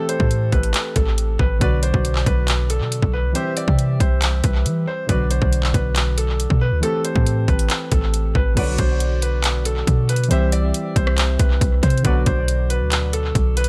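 A boomy, warm 808-style bass with a fast attack and a noise layer dominates this dark, menacing trap excerpt, entering at 0.2 seconds and sitting deep beneath everything at 138 BPM in a half-time 4/4 feel. Up front, the trap kit hits with a hard-clipped kick, metallic hi-hats, handclaps, rim clicks and crash cymbal, its electronic sound given a tape-warm edge and echo. A clear concert grand piano carries a short melody in a narrow upper register, its open, long-sustaining tone trailed by tape echo, while soft, round synth keys with a wave-folded, chorused character and a filter sweep fill in the harmony in B phrygian, moving through Am7, Bm and C. In the second section, starting at 8.6 seconds, a very quiet, tight brass ensemble adds brief mellow, classical-style stabs. The mix is dry of reverb but heavy with echo, giving the brooding passage a close, shadowy atmosphere.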